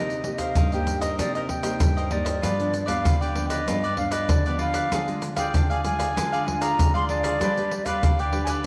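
The rhythm sits in a straight 4/4 at 97 BPM, driven by an up-front percussion section of egg shaker, pandeiro and a tight surdo, played with hard hands in a small acoustic room. This excerpt from a longer piece blends samba and choro in C minor, with a nostalgic, yearning mood. An airy wooden flute carries the melody between D5 and C6, its woody tone marked by vibrato, a crisp attack and a touch of tape echo. Beneath it, a picked cavaquinho and a full-bodied, fingerpicked nylon-string guitar provide accompaniment, the guitar reaching down to a deep classical low end with fresh strings and audible finger squeak. The harmony moves from Cm7 through G7 and Ddim to G, all within a single section, and the whole ensemble sits in a wet echo chamber reverb with small room ambience.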